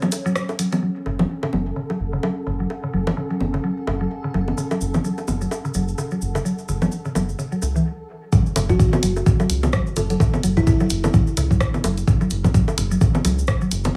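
Swung 16ths at 128 BPM in 4/4 drive this hypnotic, quirky minimal techno excerpt in F# minor, where a woody, mallet-like FM pluck riff with dub echo and layered bongos and congas with overdrive and tape echo run throughout beside a mellow acoustic cabasa that drops out briefly after the opening, a round, dark analog bass entering at 1.1 s, a warbling, nostalgic tape-like pad and a faint flickering grainy texture under a filter sweep, until a brief stop gives way at 8.3 s to a drop led by a deep, overdriven kick up front, a garage kit of hi-hat and rim click, and a short buzzing, hollow kalimba phrase, set in light room reverb.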